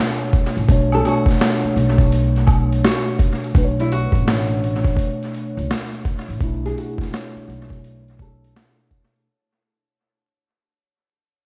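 A bright, fingerpicked nylon-string guitar melody with audible finger squeak and a mellow, tape-tinged tine electric piano open on a Bm9 chord in this hazy, nostalgic, swung lo-fi hip hop excerpt, joined at 0.3 s by an up-front, gritty, pitched-down boom bap drum kit with a thumpy kick and high-tuned snare plus a distant egg shaker and woodblock, then by a woody pizzicato upright bass, all set in a small-room, echo-heavy mix dusted with vinyl crackle before a filter sweep and fade-out take hold from 3.5 s.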